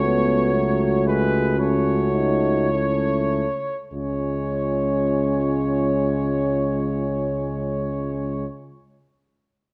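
A mellow trumpet section carries the melody up front in this melancholic, elegiac, hymn-like classical fragment for brass band, joined by a dark French horn section on a second line in the background, a clear euphonium and a trombone with light vibrato as accompaniment, and a smooth-topped tuba holding the bass up front, while the upper parts sit distant in a recital hall reverb as the rubato phrasing slows through the first 3.9 seconds and settles onto a C# chord.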